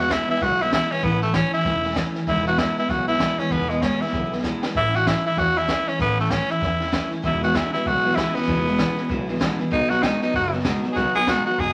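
Through vinyl crackle and a wet studio reverb, this retro, rollicking swung rockabilly excerpt features a raspy, growling tenor saxophone carrying the melody up front over a bright, jumbo-bodied picked acoustic guitar with finger squeak, a woody, thumpy upright bass and a brushed drum kit with a high-tuned snare and boomy kick that plays a fill at 4.4 seconds, while a twangy, slightly broken-up electric guitar riff joins in the background at 7.2 seconds.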